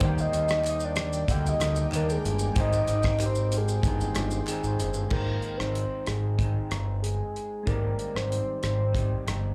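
Opening at once with a fat, up-front analog bass and a dry, damped 70s drum kit of tight kick, dark cymbals, hi-hat, rim click and shaker, this dreamy, nostalgic indie bedroom-pop excerpt at 94 BPM in Ab lydian carries a round, octave-layered synth lead with vibrato and tape echo over a twangy, slightly broken-up electric guitar with warbly pitch drift, mellow electric-piano-like synth keys, a blurred granular cloud pad through the first half, a very quiet woody kalimba that stops at 5.0 seconds, and hollow group handclaps from 0.6 to 4.6 seconds, the whole sounding like a live gig heard through the venue's PA with club reverb.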